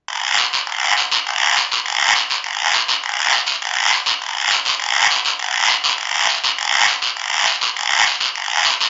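Joyful and sunny, this short cut from a longer Latin piece moves at a brisk, straight pace in 4/4. A lone guiro carries the whole passage, playing from 0.1 to 8.9 seconds. Its raspy, acoustic scrape sits up front, with the close feel of a small room. A moderate studio reverb adds a touch of space, while the top end is rolled off, giving the sound a dulled edge. The passage falls into two parts, with the second beginning at 4.8 seconds.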